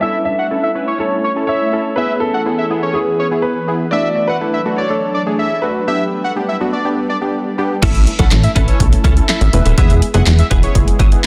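Dance-pop with a euphoric, carefree mood in a straight four, cut from a longer piece. It opens with a dark, vintage grand piano melody alongside a fat, nasal analog lead carrying vibrato, a sub octave, chorus and dub echo. Beneath them sit round, detuned analog keys and an ethereal, airy pad with ensemble chorus and built-in reverb. All four of these parts are low-pass filtered, and the lead, keys and pad pump against the sidechain. The piano stops at 7.3 seconds and the pad at 7.8 seconds, when the drop arrives with a dry, punchy analog drum machine (kick, snare, handclaps, hi-hat and crash), a plucky, funky sawtooth-and-square bass sitting up front with sidechain pumping, and a bright, clean, direct-recorded electric guitar riff with ensemble chorus. The chords move through A, E, D and G before returning to A and E, all within a dense, heavily limited master with light reverb.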